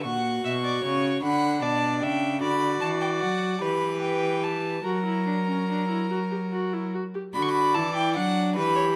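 Two violins and a cello open together, with the viola joining at 0.1 seconds, in a solemn, driving baroque-style fugue for string quartet in B minor, moving at 50 BPM in 6/8 as a fragment of a longer piece. The first violin carries the melody with a close, reedy gut-string voice, the second violin traces a lower line with light vibrato, and the warm viola fills the middle while the rich, up-front cello anchors the bass. The harmony passes through E minor with an added eleventh and an F-sharp chord before the second section begins at 7.3 seconds on B minor over D, all in the period-style bowing of single players within a moderate recital hall reverb.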